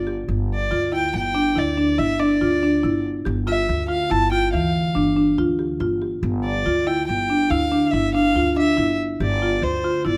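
A reedy, gut-string violin with light vibrato sings an up-front melody over plucked upright bass from the very start, joined at 0.1 s by woody marimba arpeggios with a boxy small-room tone, in this hypnotic, urgent contemporary chamber excerpt in 7/4 at 141 BPM, held on a G7(no3) chord under light reverb.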